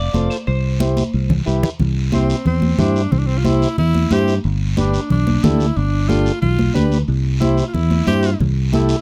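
A twangy clean electric guitar with spring reverb and tape echo opens this festive, sunny cumbia excerpt in C major at 182 BPM, dropping out by 1.4 seconds, while a punchy, up-front fingered bass carries the low end. A mellow vintage combo organ with light vibrato, bright high-tuned congas with a close, dry sound, and a faint raspy guiro fill out the groove over a simple C to G7 to C progression. From 2.1 seconds a clear, close-miked tenor saxophone takes a pop-style solo with vibrato, all within a lightly reverberant room.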